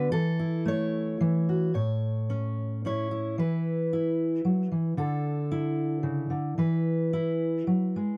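In a rubato 3/4 at about 111 BPM, this short folk excerpt in A major features a lone fingerpicked steel-string dreadnought guitar, up front and full-bodied, with audible finger squeak as it moves from A/E and Esus2 through A, E5 and Dsus2 before settling on E at 6.6 seconds. The mood is warm and nostalgic, and the playing spans A2 to C#5. The dry, close recording has a 1970s studio character and a moderate booth ambience.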